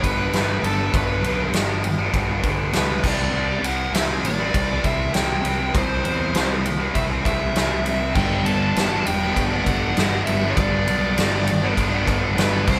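A huge arena drum kit with a punchy kick and medium-tuned snare opens this bittersweet, cathartic quiet-loud alternative rock excerpt at 100 BPM, alongside a bright, thick fuzz guitar riff, a dark, round fuzz bass played with the fingers, and a nasal, overdriven lead guitar with a parked wah carrying the melody over G and C chords. At 8.1 seconds a second overdriven electric guitar enters in the background with its own riff. The band sounds as if playing live together in a moderate stone room, with the drums up front.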